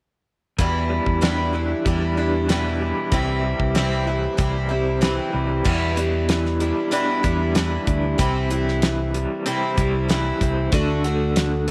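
A short cut from a longer folk rock and heartland rock piece in E minor at 95 BPM opens at 0.6 seconds with a bright, shimmering twelve-string acoustic guitar picking up front over a round, dark fingered bass with transformer saturation, a damped 70s kit with a fat snare and tight kick, and a slightly broken-up electric guitar riff through a small old amp with tremolo, all moving through Em7 and C before a D arrives at 10.7 seconds, in a dusty, reflective mood with light small-room reverb.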